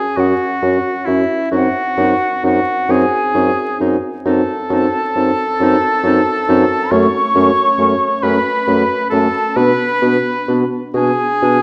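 Heard through a wet recital-hall reverb with a vinyl crackle, this short passage from a slow romantic movement for wind quintet moves at a rubato 44 beats per minute in 12/8, in a yearning, elegiac F# minor. A pure, straight-toned concert flute carries the tongued melody high above a softly vibrato oboe second line placed up front, while a smooth-topped French horn and a clarinet set back in the mix supply accompaniment, joining at 0.2 seconds alongside a present, up-front bassoon bass. The harmony darkens through a diminished chord at 1.5 seconds before settling on F# minor and turning to B minor at 9.6 seconds.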